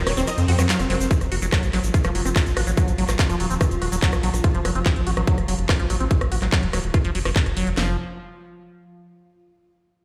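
This hypnotic psychedelic trance excerpt at 144 BPM opens on an F5 chord with a drop: a morphing wavetable pad with ensemble chorus, a squelchy, resonant acid bass riff with phaser and digital delay, and a deep, round analog bass, while a huge, detuned supersaw melody, a grainy shaker and a layered electronic kit of handclaps, hi-hat and rim click join almost at once. At 1.1 seconds the supersaw stops and a second garage kit arrives up front with a tight kick and cracking snare, as a filter sweeps across the analog bass and the pad and acid bass pump against the beat. The shaker stops at 4.4 seconds, and the whole track sounds as if played on a big sound system in a bare stone room.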